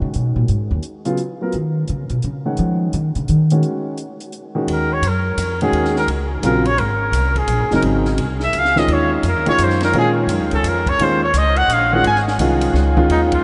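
A swinging triple-metre pulse drives this searching, intense modal jazz excerpt, cut from a longer performance. The upright bass opens with a woody pizzicato solo over grand piano accompaniment from 0.0 seconds, while a compact, dry cocktail drum kit with dark cymbals, a high-tuned snare and a punchy kick keeps time quietly beneath. At 4.7 seconds the trumpet takes over the lead with a jazz solo, its tone carrying a light vibrato and a distant, roomy quality even as it sits up front. Bass and piano stay close and present throughout, while the harmony shifts among rich minor-eleventh and open voicings. The whole band is bathed in a vast, echoing space with a long, dark reverb tail, and a band accent at 13.3 seconds closes the passage.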